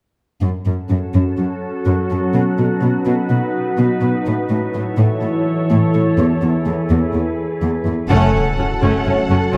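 Futuristic and relentless, this cinematic cue moves at 125 BPM in a straight 4/4, set in F# dorian and cut from a longer piece. A lush, up-front cello section carries the bass from 0.4 seconds with vibrato and portamento. At 1.0 seconds a glassy, ethereal FM pad joins on sustained chords, its dark tone softened by a slow attack, long release, ensemble chorus and built-in reverb. Together they move through F#m, B, A and E. At 8.1 seconds the harmony returns to F#m as the full orchestra arrives with a band accent and a huge, dark impact. Violins take a second line with soft-attack vibrato, violas add smooth, even accompaniment, a mellow French horn section sustains chords in the background, and double basses anchor a low F#. The whole passage sits in a wet recital hall reverb.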